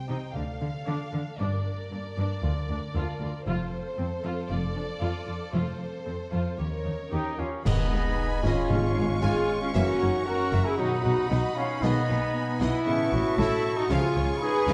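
This determined, swashbuckling film-score cue opens with lush, vibrato-laden violin sections carrying the melody and a second line over ringing, mellow harp arpeggios and a brief stroke of round, soft-mallet timpani, with a distant viola accompaniment and focused cello and double bass sections quickly filling in the bass. At 7.1 seconds a pure-toned flute group, a roomy French horn section and trumpet stabs arrive, with a very quiet trombone section following shortly after. At 7.7 seconds a full-band accent lands with dark clash cymbals, bass drum and timpani, and a soft-attack clarinet adds a background line from 8.7 seconds. The recording sits in a dark, warm scoring-stage reverb, cut from a longer piece.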